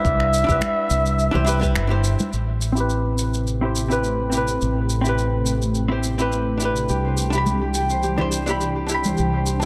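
Sunset chillout at 105 BPM in A minor with a wistful, smooth mood and a lightly swung feel, this echo-heavy excerpt opens with a brief veiled, raspy bucket-muted trumpet phrase with vibrato and scooped, growling notes over a deep electronic kick, a clean hollow-body jazz guitar and a round, up-front fretless bass, while layered electronic shaker and finger snaps and thick-skinned congas in the background keep the groove, before a filter sweep on the guitar and the pad begins at 2.3 s, a granular, ethereal pad with octave-up shimmer enters in the background from 3.5 s, and a ringing, fingerpicked Celtic harp adds arpeggios from 6.9 s, all set in a moderate spring reverb.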